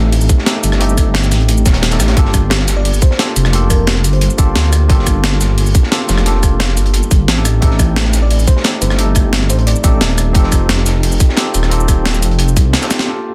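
Tight, up-front electronic kicks drive a straight 176 BPM liquid drum and bass drop in G minor, layered with a gritty, compressed sampler-style breakbeat kit and a dark, saturated breakbeat kit in the background, while a deep, rumbling detuned saw bass anchors the low end and a worn, slightly out-of-tune tine electric piano with overdrive and dub echo carries rolling, lush chords moving from Am7b5 to Gm9 and F9, as a sparkling, bell-like FM electric piano adds brief chorused, tremolo-tinged melodic touches at 2.8 and 8.2 seconds before a drum fill at 12.9 seconds closes this dense, heavily limited excerpt.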